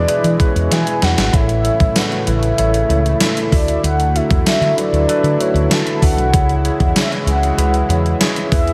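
A mellow, horn-like synth lead opens this romantic, glossy 1980s-style pop excerpt together with a tine electric piano, a chorused pulse-width pad and a woody fretless bass, all sounding from the very start. The lead carries the melody with a soft attack and a dark, round tone, thickened by chorus and tape echo. Beneath it, the electric piano wavers with a medium tremolo through a combo amp, while the shimmering, retro pad sustains chords in the background and the hollow-body fretless bass anchors the low end. A gated digital drum machine enters at 0.1 s with hi-hat, thumpy kick, tambourine and an overdriven snare drenched in gated reverb, sitting up front and punctuated by a fill from 0.7 to 1.3 s. The harmony moves from E through A and Dadd9 to C#m, and a moderate plate reverb soaks the whole mix in a dreamy haze.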